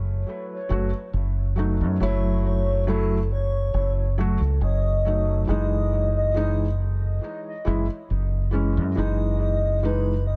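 Brooding and smoky, this slow trip hop excerpt at 69 BPM sits in F# dorian with a light swing on the sixteenths, moving from F#m7 to Emaj7/F# at 5.5 seconds. A deep, round dub bass, fingered and punchy, sits up front from the start, joined at 0.7 seconds by a felt-muted upright piano whose soft, intimate tone carries audible action noise, harmonic tremolo, tape echo and a gritty 12-bit sampler texture. At 2.0 seconds a pure, breathy sine lead enters with a soft attack and sustained, vibrato-touched notes, coloured by phaser, analog chorus and dub echo in a dry, echo-heavy mix.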